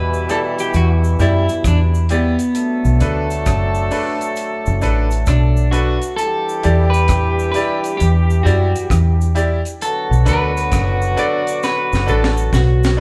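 Hypnotic and serious, this roots reggae cut from a longer piece sways at 66 BPM in B minor with a swung sixteenth feel, as a dark, clean picked electric guitar with spring reverb takes a solo over Em7 and Bm7 chords, backed by a round, punchy, up-front dub bass, a dry reggae drum kit with high-tuned snare, tight kick, hi-hat and rim click that plays a fill from 11.6 seconds, brilliant grand piano stabs with audible action noise, a clear vintage horn section with vibrato, octave doubling and tape echo, and a cabasa set in the background, all heard as a band playing live in one large studio room.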